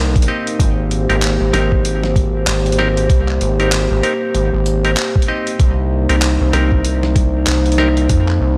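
Glitch hop with a swaggering, gritty mood at 96 BPM, swung on the sixteenths, where an aggressive, saturated sawtooth synth bass sits up front under a dark, detuned analog pad with chorus, 12-bit sampler grit and sidechain pumping, holding Cm7 and Abmaj9 chords, while a thumpy, pitched-down kick and a tape-warm boom bap kit of handclaps, hi-hat and medium-tuned snare enter at 0.2 seconds, and twangy, nasal clav stabs run through tape echo, all soaked in a dreamy hall reverb across this short cut from a longer piece.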